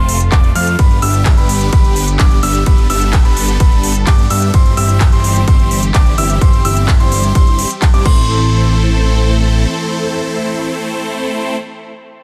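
Lush bowed strings in the background, brilliant high piano arpeggios with dub echo, a huge detuned supersaw riff with phaser and dub echo and a fat, saturated analog bass open this emotional, powerful festival progressive house drop in A minor. A pop kit with crisp hats, handclaps, ride and crash joins at 0.1 s, and a punchy, up-front electronic kick follows at 0.3 s, driving a straight 4/4 at 128 BPM. The bass, supersaw, piano and strings all pump under sidechain until the kick and drums stop at 8.1 s and the bass at 9.7 s, leaving the supersaw, piano and strings to carry on over an A minor chord in a dense, dry, heavily limited mix.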